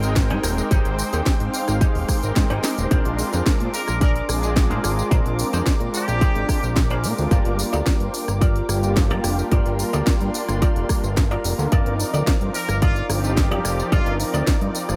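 A straight 4/4 groove at 109 BPM drives this sensual, cosmic nu-disco excerpt in C minor, with a punchy, up-front electronic kick entering at 0.2 seconds over a house kit of crisp hi-hats, a cracking snare, rim clicks and tambourine, plus a drum fill at 2.6 seconds. Beneath it, a fat, saturated analog bass built from detuned sawtooth and square waves holds the low end with a nasal, evolving tone. A smooth, mellow analog pad carries the accompaniment with chorus, tape echo and sidechain pumping, while a veiled, con sordino string section sustains bowed chords with vibrato in the background, also with sidechain pumping. An electric guitar through an envelope filter plays a clean, twangy, scooped riff with analog chorus and tape echo. A tight, brilliant muted trumpet section adds short melodic phrases with a straight mute and light vibrato, first from 3.7 to 6.7 seconds and again from 12.5 to 14.2 seconds, over a dry mix that moves through Abmaj7, Bb9, Gm7 and Cm11.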